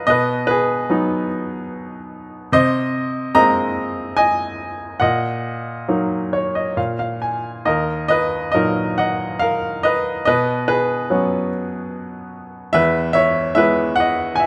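Classical solo piano in Eb minor, this lyrical fragment of a longer piece moves at 66-75 BPM in a rubato 3/4, its mood dark and wistful. A bright upright piano carries everything from Eb2 to Bb5 with a woody, polished tone and short sustain, sitting up front through close, detailed microphones and light reverb, with a brief fill between 5.9 and 7.7 seconds. The harmony drifts through colored chords such as Abadd9/C, Gbmaj9/Bb and Bsus2 before settling on E near the end.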